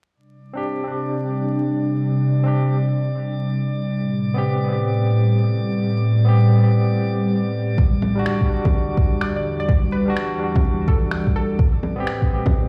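A barky, lightly overdriven electric piano with fast tremolo and tape echo opens at 0.5 seconds, joined from 0.7 seconds by an ethereal, detuned pad pulsing under sidechain pumping and a faint drifting glass-harmonics texture. Later come a deep overdriven kick from 7.8 seconds, muffled pitched-down bongos and finger snaps, and a crystalline wavetable pluck melody at 9.2 seconds, all in a melancholic, wistful future garage excerpt at 126 BPM in A dorian with swung sixteenths, lush hall reverb and vinyl crackle.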